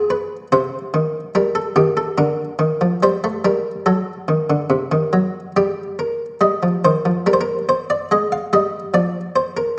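A buff-stop harpsichord in the Flemish style carries this brief, stately yet joyful fragment of a baroque-style two-part invention in triple time, its muted, lute-like pluck sitting mid-forward and up front from the very first second. The opening harmonies lean toward minor colours before brightening into a major-key passage at 6.4 s. A reverberant recital hall adds a soft halo around the solo line until the cut at 9.8 s.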